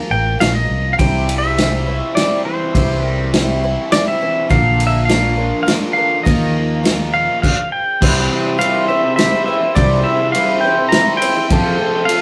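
A bright, shimmering twelve-string acoustic guitar opens this nostalgic excerpt of folk and heartland rock in 3/4 at 103 BPM, joined almost at once by a clean, up-front pedal steel carrying the melody with slide and volume swells, a fingered electric bass, and a vintage drum kit with a punchy kick and a rolled-off top. A biting, double-tracked overdriven guitar riff sits in the background from 1.0 s as the chords move through C, Bb and Ebsus2 in C mixolydian. At 8.0 s a reedy, mellow accordion adds sustained chords, all heard in a rough rehearsal-room recording with moderate reverb.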